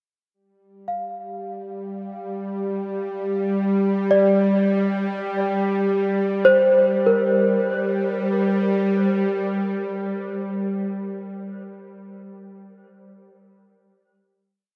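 A small celesta fades in first, scattering delicate, bell-like arpeggios between Bb4 and F5 through a diffuse ambient delay. A tense, string-like bowed drone on G3 soon joins, with a slow attack, vibrato and a ring-modulated edge, as this melancholic, reflective ambient piece drifts in free time from Fsus2/G to Gsus4 and settles on G minor at 7.1 seconds, bathed in a huge, wet reverb. The drone stops at 10.4 seconds, and the celesta's sweet notes ring on alone to the end.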